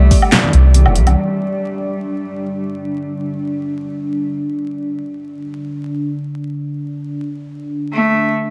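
This dark, meditative slice of deep dubstep, cut from a longer piece, opens on a drop. A round, soft sub bass sits up front beneath a moody sawtooth pad and a brief phrase of nasal, earthy bowed cello, whose 12-bit sampler grit trails into dub echo. A punchy, layered electronic kit of snare, hi-hat, handclaps and woodblock plays alongside distant, ringing congas in dub echo; the drums, congas and bass fall away by 1.2 seconds, leaving the detuned, chorused pad hanging in free time over lightly reverberant vinyl crackle until the cello returns briefly at 7.9 seconds.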